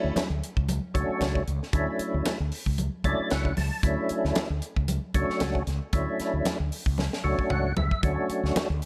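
A percussive tonewheel organ and a mellow fretless electric bass open this bright, soaring electric jazz fusion excerpt in D major, resting on a Dmaj9 chord at 114 BPM in 4/4 with a light sixteenth-note swing. The organ sits up front, fat and lightly overdriven, its third-harmonic percussion and key click colored by a slow rotary speaker and chorus vibrato, and it plays fills at 2.8 s and again near the close. The fretless bass is dark and round yet punchy, heard direct and amped low in its register. At 0.2 s a tight funk drum kit joins, acoustic and natural in a small room, with a high-tuned snare, tight kick, hi-hat and toms, and it takes a fill at 7.0 s. Congas add a thin-skinned, medium-tuned layer, compressed and saturated under soft hands, while studio reverb gives the short cut a sense of space.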